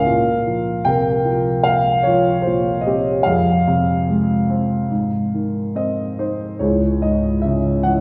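This melancholic, wistful classical piece for lyrical solo piano moves in a rubato 4/4 at around 69-78 BPM, tuned to A4 = 442 Hz. A dark, mellow grand piano with a boxy tone and long sustain spans C#2 to Ab5, moving through Bbsus2, Fm and Ab before turning to C#m at 6.6 seconds as a new section begins. The wet recital-hall reverb places the listener further back in the room, and the recording is cut from a longer piece.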